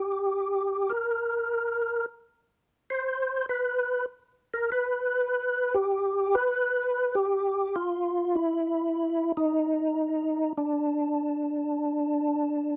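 A percussive tonewheel organ plays alone from the start, its fat, clean tone sharpened by second-harmonic percussion and colored by a slow rotary speaker and chorus vibrato as it moves between D4 and C5. This soulful, greasy jazz fragment swings its eighth notes at 99 BPM in 4/4, tuned to A4 = 442 Hz. Close, detailed microphones keep the organ up front, with a light reverb around it across the 12.8 seconds cut from a longer piece.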